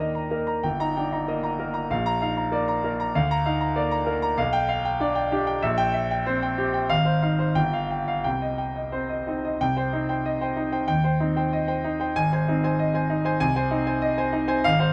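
A clear concert grand piano opens alone, sounding an Eb major harmony that moves through Bb before the music turns toward C minor from about 4.4 seconds. This short cut from a longer classical piece is a virtuoso piano study in two, played with a flexible, rubato feel and a heroic, sparkling mood. The solo piano sits up front with an open tone and a deep bass, ranging from G1 up to Bb5. The harmony passes through G7 and C7 shadings, settles on C minor near 8.2 seconds, and then opens a new section at 9.6 seconds that leans toward Ab major before the fragment breaks off at 14.9 seconds. A light reverb gives the instrument a sense of space while keeping its detail clear.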